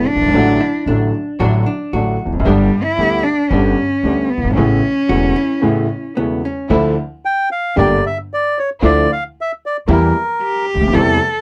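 A passionate, melancholic tango excerpt opens with a rich, bowed solo cello singing with vibrato and portamento over boxy grand piano, veiled con sordino string stabs in the background, and woody pizzicato upright bass, while a clean, hollow-body electric jazz guitar adds a dark second line from 0.6 until 6.7 seconds. After a brief break, a reedy, up-front bandoneon takes the melody from 7.3 seconds in a freely pushed and pulled, rubato tempo, and the cello returns briefly at 10.4 seconds. The sound is dry and close, like a 1970s studio.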